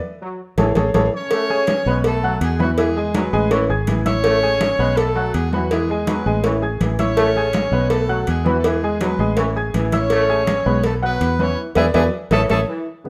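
Sunny and joyful, this salsa excerpt moves at a brisk 164 BPM in 4/4 with a straight feel, set in A major. The clear trombone section opens at 0.2 seconds on a second line with smooth-topped, pop-style vibrato, and the band hits accents together in the opening moments and again near the close. A woody, slightly detuned upright piano with a worn character and long sustain carries the accompaniment, while a round, foam-muted fingered electric bass sits up front, dark and direct. Bright, damped congas with soft hands stay in the background, and a low-tuned cowbell struck with hard hands adds its round knock. From 1.1 seconds a mellow horn section takes the melody up front, playing in octave doubling with light vibrato over a cycling Amaj7, B5 and E progression that turns to E7 before a drum fill at 12.3 seconds, all in a moderate large studio reverb.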